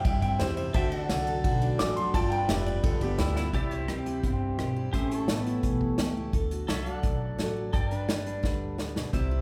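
Down-home and nostalgic, this short cut from a longer honky-tonk and classic country piece moves in a straight four. A twangy, compressed pedal steel guitar played with fingerpicks takes a solo as a second line, with volume swells and slide. A second, quieter pedal steel holds bright, clean sustained chords beneath it. A dreadnought acoustic guitar with old strings picks out the accompaniment, and a woody, thumpy upright bass plucked on gut strings anchors the low end. The unplugged drum kit sits up front, played with bundle sticks on a tight kick, medium-tuned snare, rim click, hi-hat and dark ride cymbal, with fills at 3.4 seconds and again near the close. A warm upright piano lingers in the background from 0.4 to 3.4 seconds, and the band rings out in a church or concert hall with moderate reverb.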